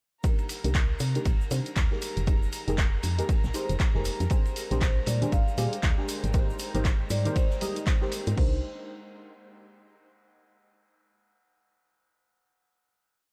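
A dark, warm studio sound carries this smooth deep house piece, where an up-front punchy kick drives a woody FM bass with tube saturation that pumps beneath deep, detuned chord stabs with chorus, phaser and delay, while drum-machine hats, claps and crash join in, a rolled-off vintage breakbeat with ride and snare, a grainy egg shaker and a floating violin section sit in the background, a silky string machine enters at 4.6 seconds and a dry, close-miked marimba melody follows at 4.8 seconds, congas play from 5.1 to 7.7 seconds, and the groove resolves on a final Cm7 chord at 8.4 seconds.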